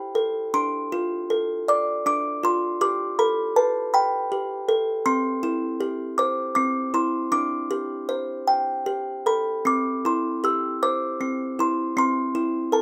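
A small, dark-toned music box sits up front in a light reverb, its plucked, tinkling notes delicate and smooth as it plays alone through this short passage from a longer piece. The gentle, innocent lullaby sways in a rubato 6/8, moving through soft suspended and added-tone chords before settling into a new section at 9.7 seconds.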